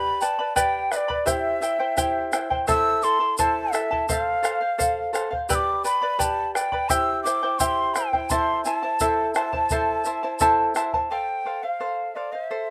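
A straight 2/4 pulse at 85 BPM carries this wistful, melancholic Andean folk fragment in A minor, cut from a longer piece. A bright, shimmering charango sits up front from the first moment, its double strings, some doubled at the octave, fingerpicked through a cycle of G, C, Am and F. Over it a breathy cane quena sings the melody with a straight tone, a crisp, chiffy attack and lifted highs, touched by a slapback echo. A grainy, close tube shaker joins at 0.2 seconds and a round bombo at 0.6 seconds, both sitting low beneath the quena and charango. The percussion stops around 11 seconds, as the harmony settles on F and a short closing passage leaves the quena and charango alone. The open-air sound is dry and immediate, with little reverb.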